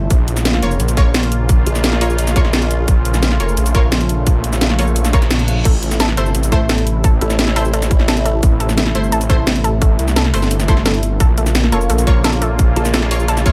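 A dry, up-front mix carries this dark, futuristic cut of technical drum and bass, where an overdriven tight kick and a cracking-snare kit with bright hats, shaker and crash drive over a thick detuned saw bass, a sweeping resonant pad with sidechain pumping, punchy orchestra-hit-like stabs with dub echo in the background, brief bursts of formant-sweep wobble bass, a very quiet reverse cymbal at 5.2 seconds, and a round, nasal analog pluck arpeggio entering at 5.7 seconds.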